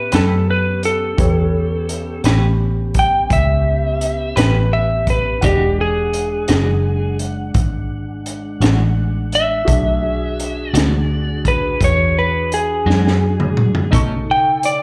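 Heard through a club PA with small-room ambience and club reverb, this excerpt is a laid-back, gritty slow blues in 12/8 at 56 BPM in E mixolydian, moving from A9 to E9 at 5.4 s and on to B9 at 13.9 s. A dark, slightly broken-up electric slide guitar with slapback echo solos throughout, up front alongside a round, foam-muted fingered bass and a saturated breakbeat kit with a high-tuned snare and punchy kick that plays a fill at 12.9 s. A woody, slightly detuned upright piano sits in the background, and it shares slapback echo with a clean, picked electric guitar with tremolo, while a flute-like tonewheel organ holds sustained chords through a slow rotary speaker.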